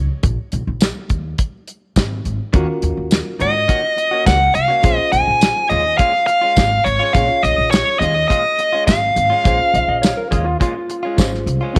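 A light small-room reverb frames this mournful, smoky soul blues excerpt, where a thumpy, woody upright bass with gut strings opens the cut and a damped 70s drum kit with a tight kick, tambourine and hi-hat sits up front. At 2.5 seconds a worn, slightly out-of-tune reed electric piano and a bright, direct-recorded clean guitar playing stabs join over a minor-chord progression, and at 3.4 seconds a dark, smooth, overdriven lead guitar carries the melody. Near the end, at 9.8 seconds, a slightly broken-up slide guitar adds a brief second line.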